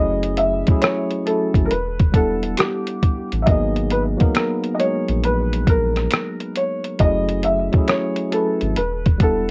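A 68 BPM groove in 4/4 swings its sixteenths, with a compressed, pitched-down sampler-style drum kit sitting up front from 0.2 seconds: a thumpy kick, hi-hat and rim click, all muffled. This nostalgic, hazy lo-fi hip hop fragment, cut from a longer piece, sits in G# phrygian with its tuning set slightly low at A4 = 436 Hz. A soft, intimate felt-muted upright piano carries the melody between G4 and E5 through a low-pass filter. Beneath it, a clean tine electric piano heard through built-in speakers accompanies across F#m9, Em9 and G#m9, colored by cassette tape and its own low-pass filter. A deep, round dub sub bass with a sustained triangle and square wave tone anchors the low end. A very quiet finger snap in a small room adds a human touch from 0.8 to 8.2 seconds, while light reverb and worn, warbling tape with drifting pitch give the whole recording its faded character.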